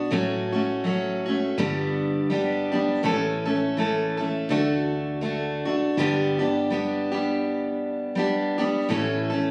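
A picked steel-string acoustic guitar sits up front in this short clip of acoustic folk, its fresh strings giving a warm dreadnought tone across a range from G2 to A4. Beneath it, a fretless electric bass stays in the background, dark, growly and round, with a hollow-body character. The mood is hopeful and nostalgic, carried by a gentle swung eighth-note feel in 4/4. Both instruments play together from 0.0 to 9.5 seconds, moving through F#m/A, G, A, D and G before settling on A at 8.9 seconds. The sound has the intimacy of a phone recording in a room, touched with light reverb, and the clip is cut from a longer piece.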